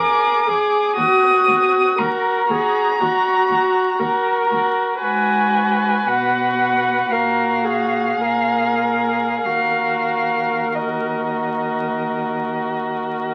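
Classical slow romantic movement for string quartet, elegiac and solemn, drifting in rubato at 44-60 BPM in Eb minor and cut from a longer piece, where a muted first violin sings the veiled, up-front melody with vibrato, portamento and a soft attack over a second muted violin's dark inner line, an up-front muted viola accompaniment with light vibrato and a close, bowed muted cello bass, all moving through Ebm, Abm7 and Gbmaj9/Bb in a moderate studio ambience heard through the crackle of a very old 78 rpm record.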